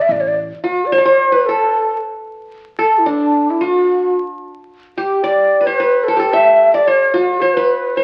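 A breathy, hollow ney carries the melody up front with vibrato and a crisp attack throughout this festive, warm Arabic maqam ensemble excerpt in a straight 4/4. Beside it from the very start, a bright-edged qanun plucked with fingerpicks plays a second line in the same register, while a woody, growly pizzicato upright bass sounds only briefly, from 0.1 to 0.5 seconds. The whole sits in a moderate large-studio reverb and has the aged sound of a very old 78 rpm record, complete with vinyl crackle.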